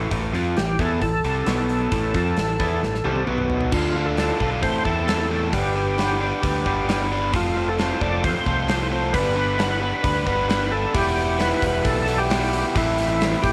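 A bright, double-tracked overdriven electric guitar sits up front with a driving riff in this brooding classic rock piece, backed by a round, punchy overdriven fingered bass and a polished, airy gated 80s drum kit with bright cymbals and a tight kick, the kit playing a fill from 2.8 to 3.7 seconds. From 0.6 seconds a thick, gritty overdriven tonewheel organ carries the melody through chorus vibrato and a slow rotary speaker, its key click audible, as the chords move from A minor through D minor, G and F before settling on E minor and back to A minor. Light reverb colours the mix in this excerpt cut from a longer piece.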